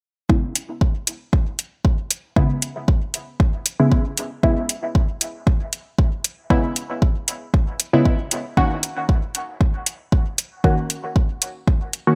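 At 0.3 seconds a filtered dub chord stab and a deep, overdriven electronic kick drum arrive together, setting a nocturnal, hypnotic dub techno groove at 116 BPM in 4/4 with a light 16th-note swing. Metallic, overdriven electronic hi-hats join at 0.6 seconds, and both drum parts sit up front with a layered, produced character and the sense of having been re-recorded in a large room. The stabs are detuned sawtooth chords in C# dorian, muted and mellow, with a fast attack, short decay and an evolving filter sweep, colored by chorus, phaser, dub echo and sidechain pumping. The harmony rests on C#m7 before moving to D#m7 at 8.6 seconds. Light digital ambience and a bright 1980s-style digital production frame this brief cut from a longer piece.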